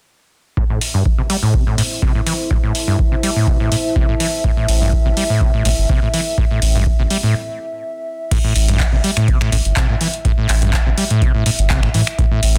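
A squelchy, gritty overdriven acid bass sits up front with a resonant filter sweep running through the first part, driving a trippy acid house excerpt at 124 BPM in A minor pentatonic with a light 16th-note swing. A deep electronic kick and a booming analog drum machine with metallic hats, handclaps, finger snaps and crash carry the beat, both re-recorded in a large room. A nasal, detuned dark analog pad holds chorused chords while a deep, wave-folded ambient pad drifts in the background; a thick, saturated sine sub bass joins at 4.7 seconds, and after a break from 7.3 to 8.3 seconds the harmony moves from A minor to an A power chord, with the pads and basses pumping against the kick in a dense, heavily limited mix.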